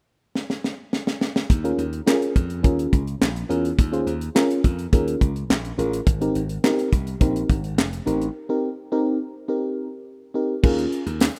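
A tight, up-front funk drum kit with a high-tuned snare, handclaps and crash opens with a fill at 0.4 s before a punchy, bright slap bass and a round, warbling FM electric piano with chorus enter on Eb7sus4 and Abmaj9 chords in this smooth, feel-good early-eighties boogie funk excerpt, which drops into a break at 8.4 s and closes with a very quiet jingly tambourine at 11.2 s, all in a rough home demo mix with light studio reverb.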